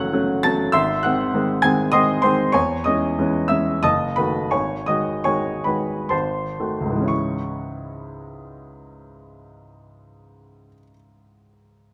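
Stormy yet bittersweet, this brief passage cut from a longer romantic character piece for solo piano unfolds in C# minor and 3/4 time with a free, rubato feel, the tempo drifting between 59 and 102 BPM. A clear baby grand piano carries everything alone, ranging from F#1 up to A6 with a natural, up-front tone and short sustain. The harmony moves from F# minor through G# and C# minor colorings toward a diminished chord and a tense G#7b9. It then settles on C# minor at 7.1 seconds as the second section begins. The playing slows from 1.6 to 7.1 seconds, stretching that dark dominant buildup before the arrival. Close, detailed microphones capture the instrument inside a moderate recital hall reverb, and the tuning sits slightly below standard pitch.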